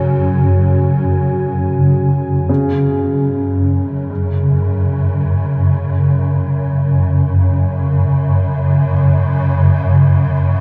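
Dark ambient drone in free time, cavernous and ominous, cut from a longer piece and set in a vast, echoing space with heavy cathedral reverb and a cassette tape character. A swarming, tense drone sits up front in the low register for the full 10.6 seconds, granular and detuned yet mellow, while a deep, moody sawtooth analog pad with a sub octave and chorus holds sustained chords until 2.5 s. From there a warm grand piano enters with arpeggios on C#3, intimate and natural, its action noise audible and its notes trailed by tape echo.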